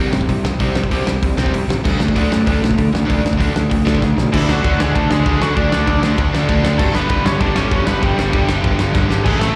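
Upbeat and rowdy, this punk rock excerpt charges along at 194 BPM with a double-tracked overdriven guitar riff, a punchy fuzz-drenched picked bass and a loose indie drum kit with a fat snare and dark cymbals, as the riff works through power chords, before a biting lead guitar with slapback echo enters at 4.3 seconds after a drum fill, all heard as a live gig through the venue's PA with light reverb.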